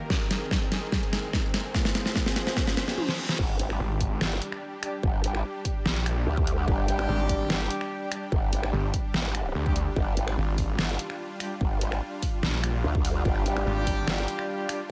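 At the 3.4-second drop of this heavy, aggressive half-time wobble dubstep excerpt, a bright, saturated growl bass with a wobbling formant filter crashes in, and a snarling, detuned sawtooth bass joins it at 3.8 seconds. Both are pushed up front over a punchy layered electronic kick and a dubstep drum kit with a deep snare, snaps, hi-hat, toms and crash. Before that, a lush supersaw pad pumps against the sidechain alongside a very quiet riser and reverse cymbal during a short drum-filled build-up. From 4.8 seconds, a mellow, distant brass ensemble adds delayed classical-style stabs with light vibrato, all set in a light reverb.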